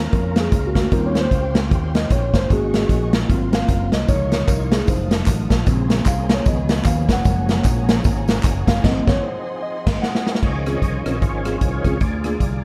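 A swung 4/4 groove at 152 BPM drives this soulful, hopeful uptempo gospel piece in Db major, with a punchy, up-front big-band drum kit and a round fingered electric bass beneath a mellow tine electric piano that solos until 10.4 s. An overdriven, gritty tonewheel organ with fast rotary speaker and chorus vibrato holds thick chords and then takes the lead, while a lush symphonic string section sits distant in the background and dry tambourine and group handclaps join from 4.1 s to 8.8 s. Extended chords such as Dbmaj13 and F7b9, a band accent and drum fill leading into the organ solo, and light reverb on a dark production round out the sound.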